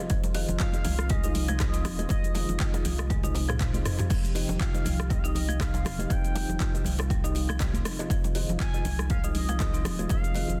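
A punchy, tape-warm electronic kick drives this earthy, spiritual afro house excerpt at 120 BPM in F minor, joined by a round, deep sub bass, a house drum kit with soft-clipped snare, handclaps, shaker, toms and crash, and acoustic congas and high-tuned bongos, all swinging on the 16ths. A woody rosewood marimba plays delayed arpeggios over a mellow, detuned sawtooth pad and dark, felt-muted piano stabs with audible action noise, every one of these pumping against the sidechain as the chords move from Fm7 to Cm and back. An expressive synth lead with vibrato, lush chorus and vintage 12-bit sampler grit enters at 0.6 seconds, and a drum fill arrives at 3.1 seconds in this dense, heavily limited mix with light studio reverb.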